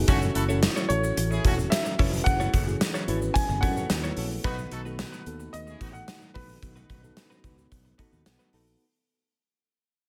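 Romantic and nostalgic, this cut from a longer 1980s-style pop piece moves at a straight 110 BPM in B mixolydian, shifting from F#m7 to B7 as it fades out. A gated drum kit with a tight kick and medium-tuned snare, a round, punchy fingered bass, a dark, chorused FM electric piano, a silky, very quiet string machine and a distant, grainy tube shaker carry the groove, while a clean, direct-recorded electric guitar riffs in the background through analog chorus and delay. Clear, roomy horn stabs drop out at 5.9 seconds, an intimate grand piano with audible action noise and tube saturation carries the melody from 0.9 seconds, and the electric piano adds a fill at 8.0 seconds, all in a small room with light reverb.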